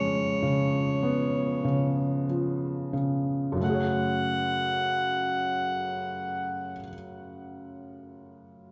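Pop in F# harmonic minor at a very slow 44-51 BPM, heartbroken and melancholic, this brief fragment of a longer piece opens by slowing down over a C#7/E# chord as an up-front, jazz-style alto saxophone with a warm subtone and tape echo sings a soft-edged solo melody over an intimate felt-muted upright piano whose audible action noise stays close, before the harmony settles on F#madd9 and the saxophone falls silent at 6.8 seconds, leaving the mellow piano alone until 8.7 seconds, all within a dark production and moderate scoring-stage reverb.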